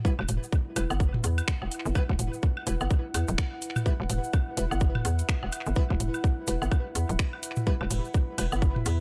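Crisp, detuned wavetable chord stabs with tape echo open this hypnotic, sparse minimal techno excerpt at 126 BPM in E minor, alongside a tight, up-front electronic kick re-recorded in a large room; they are soon joined by a grainy egg shaker in the background, a hollow, bouncy FM bass with sidechain pumping, electronic woodblock and toms trailing dub echo, a booming analog drum machine of finger snaps, metallic hi-hats and ride cymbal, and, from 0.4 seconds, a warbling, nostalgic lo-fi pad with chorus and sidechain pumping, the whole set in an echo-heavy digital ambience over a single Em chord with a swung 16th-note feel.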